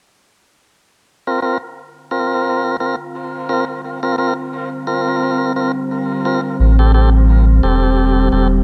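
Hazy and spacious, this ambient excerpt drifts in an easy 4/4 with a light swing. A lightly overdriven tonewheel organ opens at 1.3 seconds with up-front stabs, its key click and vibrato filtered and trailed by dub echo. At 2.8 seconds a deep, dark pad of detuned sawtooth unison over a sine sub octave fades in with a slow attack, sustaining chords through chorus and its own reverb. The harmony rests on a C7sus4 before moving to Am7 at 6.6 seconds, when a round sine sub bass enters with a fast attack and holds low notes up front. Light digital ambience surrounds the whole, keeping the space airy and moody as the piece cuts off.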